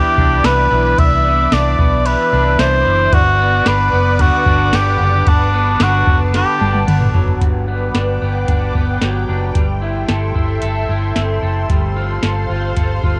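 Cut from a longer piece, this home recording on cassette has a small, close booth ambience and a soft, hazy dream pop glow. A mellow, up-front cor anglais sings the melody with light vibrato and a soft attack in a classical style, coloured by its own tape echo and plate reverb, until it falls away at 6.8 seconds. Beneath it, a thick, detuned unison pad holds lush sustained chords with a slow attack and long release, its bright sawtooth and square-wave tone shimmering through chorus and phaser. An electric guitar at the edge of break-up picks twangy arpeggios with a subtle chorus and tape echo, while a dark, round, foam-muted fingered bass and a soft vintage rhythm box, with a deep kick, tonal snare and metallic hats, join at 0.2 seconds. A drum fill from 6.3 seconds leads into a new section as the harmony moves from Cmaj9 and Gmaj7 to Am7/G and F/G, keeping the mood blissful and dreamy.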